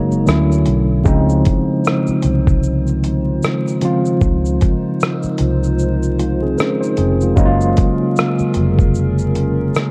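Cosy and dreamy, this excerpt of lo-fi hip hop moves at 76 BPM with a swung 16th-note feel in Db major, its dark production dusted with vinyl crackle and light reverb. A clean tine electric piano sits up front over a gritty, compressed sampler-style drum kit with a thumpy kick, rim click, hi-hat and shaker, while a round, foam-muted electric bass anchors the low end. Beneath them a mellow, detuned tape-like pad warbles through chorus and its own reverb, holding sustained chords that pass from Dmaj9 to Dbmaj9 before reaching Gbmaj9 at 7.4 seconds.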